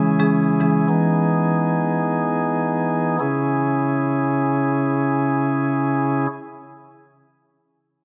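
In free time, this short, mellow and sultry afrobeats fragment opens with a dark, smooth marimba struck with medium mallets, which plays a brief accompaniment over C#m before dropping out at 0.9 seconds as the harmony moves to Emaj7. A soft pipe organ on flute stops, sounding from the very start, holds sustained chords up front until 6.3 seconds, its baroque voicing carrying a chiff and a tremulant, and the harmony returns to C#m at 3.2 seconds. A moderate plate reverb surrounds the parts, and the master is dense and heavily limited.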